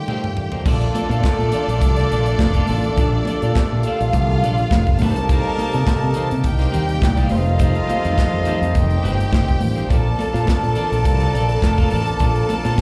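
A tight, dry funk drum kit sits up front with the fingered electric bass, which enters at 0.7 seconds after an opening drum fill and band accent, driving this danceable disco cut heard live through a club PA, where lush bowed strings with slapback echo, punchy octave-doubled horn stabs, a dark clean electric guitar, a fat, lightly overdriven tonewheel organ with key click and slow rotary speaker, and ringing, high-tuned congas fill out the groove over chords moving from F9 to Bbmaj7 and Cm7.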